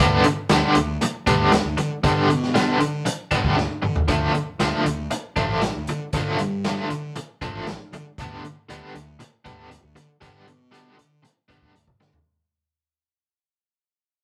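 A straight 4/4 groove at 117 BPM drives this dark, trippy psychedelic rock excerpt, cut from a longer piece, with a vintage acoustic kit of hi-hat, punchy kick, medium-tuned snare and toms in a small, pumping room, rolling out a fill at 3.6 seconds. Up front, a bright, overdriven semi-hollow guitar plays a double-tracked, picked riff with tremolo, while a fingered electric bass adds round, dark fuzz beneath it. The chords move from G/D to Dm at 4.1 seconds and back at 8.2 seconds, all under a fade-out in a rough rehearsal-room recording with moderate studio reverb.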